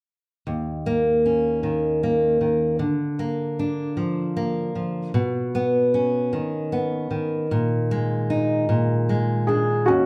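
This excerpt of an intimate, reflective acoustic folk-pop ballad opens at 0.5 seconds with a fingerpicked steel-string acoustic guitar, dark-toned and up front, laying down the accompaniment in a slow, straight 6/8 at 51 beats per minute, counted in dotted quarters. Its harmony moves from Eb5 through Bb/D and Badd9 to Bb7sus4, settling on Bb7 at 8.7 seconds, with the guitar spanning Eb2 to Eb4. Just as the passage closes, at 9.5 seconds, a felt-muted upright piano slips in with a brief melody between Db4 and Ab4, its soft, mellow tone marked by thin felt and audible action noise close to the listener. The two play as a band live in one room, surrounded by a moderate large-studio reverb with a 1.2-second decay. The instruments are tuned to A4 = 439 Hz.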